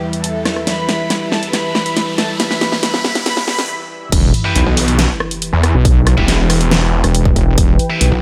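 Menacing and aggressive, this heavy wobble dubstep excerpt in E minor runs at 139 BPM with a half-time 4/4 feel, opening on a soft, floating violin section melody with dub echo over a lush, thick unison pad and a nostalgic, lo-fi tape-like pad, both pumping with sidechain, while a background riser and sub drop, a filter sweep and a big-room dance kit with a huge snare build through a drum fill to a brief break at 3.7 seconds; then the drop at 4.1 seconds unleashes an up-front wobbling sawtooth bass, a punchy overdriven electronic kick, double-tracked high-gain guitar stabs with dub echo, and a snarling, growling distorted saw bass.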